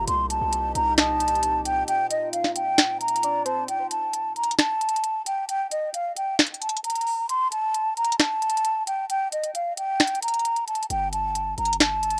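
A dry, rough home-demo mix of brooding, hard-hitting half-time trap at 133 BPM in 4/4, tuned to A4 = 436 Hz and cut from a longer piece, with an airy, hollow concert flute melody with vibrato and digital delay riding up front over crisp hats, a sharp snare and finger snaps. Beneath the opening Cm chord, an evolving, resonant sawtooth pad with chorus and phaser sustains, a heavy, aggressive distorted 808 bass hits briefly, and a round, octave-layered synth lead with chorus enters at 1.0 s while the kick soon drops out. After 3.7 s the pad and lead fall away, leaving flute and drums until the 808 returns at 10.9 s under a Gsus2 chord.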